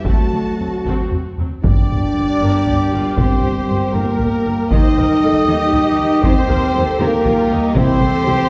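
In a slow 6/8 at 78 dotted-quarter beats per minute, this dark, epic orchestral film cue in G minor moves over a taiko ensemble struck with heavy sticks, its sound close and dry against the stage reverb that sets the orchestra further back in the room. Two bowed violin sections, one with a soft-attack, expressive vibrato carrying the melody and a smoother, more distant one holding a second line, float lush in the background above violas with portamento and dark, woody cellos paired with double basses on the low end. Mellow French horns, the most prominent voice, sustain chords in their middle register with trombones set behind them. At 1.6 seconds the music turns to G minor, a huge, bright impact hits very quietly, and an airy flute line and a punchy solo trumpet stabbing on a single G enter. The harmony then moves through Eb before landing on C near the end of this fragment cut from a longer piece.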